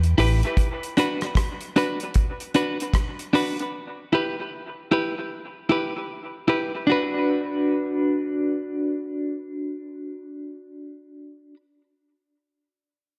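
A loose, swung sixteenth-note lilt in 4/4 drives this deep, meditative dub reggae excerpt, opening with a damped 70s drum kit of hi-hat, tight kick and rim click that sounds dry and up front before dropping out at 3.7 seconds. A clean, picked electric guitar, compressed and close in the mix, enters at 0.2 seconds and carries the accompaniment through to 11.6 seconds, its tremolo and dub echo trailing over chords that move between E minor and B minor. Light reverb and a small room ambience surround an echo-heavy mix, with a new section arriving at 6.9 seconds.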